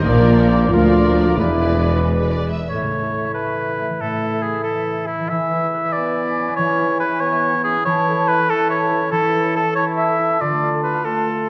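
A soaring, heroic film-score cut in 6/8 at 93 BPM and A major opens with the orchestra already in full voice: a lush violin section carries the melody with expressive vibrato, while a second, distant violin section and a focused viola section sit in the background. Cellos, rich double basses and a very quiet tuba anchor the bass, trombones hold dark, tight chords, and a clear trumpet adds punchy stabs. By 2.7 s the strings, low brass and trumpet have dropped away as the harmony settles on A. That leaves a close, up-front oboe, an airy, hollow flute group and a bright clarinet playing second lines over the mellow French horn section's sustained chords and the ringing arpeggios of a concert harp. The chords pass from Bb and E7 through A, E6 and A/E before landing on Dm at 10.4 s. A roomy scoring-stage reverb surrounds the music, and the sound is worn like old cassette tape, with warbly pitch drift and a dulled top end.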